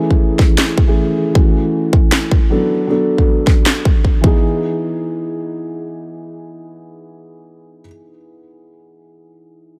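Future bass with a half-time feel, playful and euphoric, cut from a longer piece and built on a felt-muted upright piano that sits up front with a soft, boxy, dark tone, pulsing with sidechain pumping and dub echo as it moves through Amaj7, F#m7, Bm7 and Emaj7. A punchy, layered electronic kick, re-recorded in a small room and placed up front, plays until 4.3 seconds, alongside a sharp electronic snare and handclaps. Once the drums stop, the piano carries on alone in a digital ambience until 9.8 seconds.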